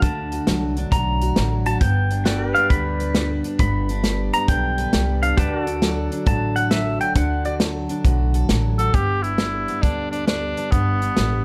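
A twangy, fingerpicked pedal steel guitar leads this easygoing, nostalgic honky-tonk and classic country excerpt in G major at 135 BPM, with a swung 4/4 feel. It solos up front with slide and volume swells, while a second, compressed pedal steel holds sustained chords in the background. A full-bodied dreadnought acoustic guitar picks the accompaniment, a woody, thumpy pizzicato upright bass and a natural studio drum kit with a punchy kick, hi-hat and medium-tuned snare drive the groove, and the harmony moves from D to G and back to D before a smooth, classical-style cor anglais enters up front with the melody at 8.8 seconds, all in a dry mix with little reverb.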